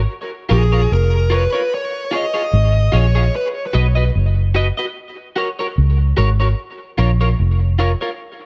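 An echo-heavy, lightly reverberant mix carries this hypnotic, heavy reggae fragment at 74 BPM in Bb phrygian, where a round, punchy, foam-muted fingered electric bass sits up front, a dark, distorted lead guitar with tape echo cries a short bluesy line from 0.5 to 3.5 seconds, and a compressed, slightly broken-up electric guitar with analog chorus and tape echo holds the accompaniment through chords moving from Bbm to Db, B, Gb and back to Bbm.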